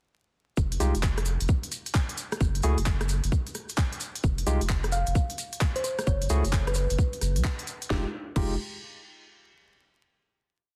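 Dry, dense and heavily limited with a layer of vinyl crackle, this moody, late-night two-step UK garage piece at 131 BPM swings a thick, saturated sub bass line and a tight, up-front four-on-the-floor kick under skipping hats and rims, a cracking snare, claps and crash from a tape-warm garage kit, with mellow maracas sixteenths in the background and sparse, barky electric piano chord stabs trailing tape echo, while a round, tine-like synth pluck with chorus and tape echo adds short answering phrases from 4.9 to 6.8 seconds before everything settles on a final Fm9 chord at 7.9 seconds.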